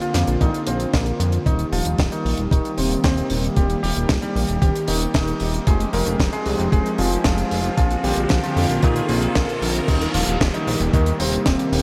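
A straight 4/4 pulse at 114 BPM drives this playful, danceable italo disco excerpt in Eb major, with a thumpy, sampler-style electronic kick joining at 0.4 seconds alongside a tight acoustic funk kit of crash, hi-hat and high-tuned snare. A glossy, retro synth bass with a plucky filter and chorus carries the low end, its pulse and sawtooth tones evolving as it moves between Eb1 and Bb2. Over a mellow, detuned sawtooth pad that holds sustained chords in the background, a worn baby grand piano plays the melody with long sustain and tape echo. The harmony moves from Bbadd9 to Eb, through Fmadd9 and back to Bbadd9 before returning to Eb at 9.9 seconds, while a riser builds in the background from 4.8 seconds. A huge ambient reverb soaks the whole mix in a dreamy haze, and the piece is cut from a longer work.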